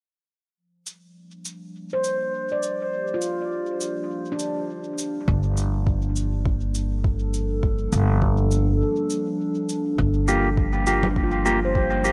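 A light reverb gives this ambient dub fragment a spacious, deep feel, moving at 102 BPM in 4/4 with a gentle swing on the sixteenths and resting on a G minor seventh chord. A warbly, tape-like pad opens at 0.6 seconds with slow, sustained chords, its nostalgic lo-fi haze softened by chorus and its own reverb. Electronic cabasa and congas follow, trailed by dub echo, while a ringing, meditative handpan traces smooth fingertip arpeggios through a low-pass filter and echo; both the pad and the handpan pass through filter sweeps. At 5.3 seconds a woody, thumpy pizzicato upright bass with gut strings arrives up front alongside a soft electronic kick drum. After a short break, a mellow, clean electric guitar enters at 10.3 seconds with dark, fingered stabs, roughened by vintage 12-bit sampler grit and sent into dub echo as the handpan briefly returns.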